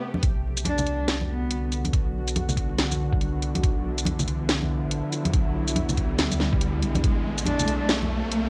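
Deep dubstep at 141 BPM in B phrygian, this meditative, dark fragment of a longer piece rides a half-time, swung groove as a tense, string-like drone with vibrato and a wobbling, square-and-sine bass hold the Bm-to-Am7 harmony under an electronic swell and riser that build across the whole span. Up front, a muffled, thumpy kick and a layered garage kit with a cracking snare and bright hats drive the beat, while low-tuned, close and dry congas sit in the background. A woody, bowed cello with dub echo surfaces briefly at 0.7 seconds and again at 7.5 seconds, all colored by the grain of a home cassette recording.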